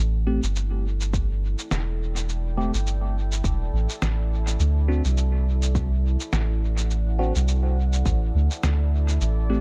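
Hazy and meditative, this ambient dub excerpt sits at 104 BPM in 4/4 with a swung sixteenth feel in A dorian, tuned slightly below standard pitch, and moves between two chords. A deep, moody pad fades in from the start, its detuned sawtooth unison and sine sub octave held in sustained chords under chorus and built-in reverb. A soft, round sub bass sits up front and carries the low end throughout. A clean tine electric piano enters at 0.3 seconds with stabs through a combo amp, colored by phaser and dub echo. Muffled, pitched-down cabasa and a fat, compressed snare, also sent into dub echo, pair with a layered, tape-warm electronic kick that arrives at 1.1 seconds. Near the end, at 9.3 seconds, a glassy texture of drifting overtones surfaces quietly in the background, and the room itself stays dry.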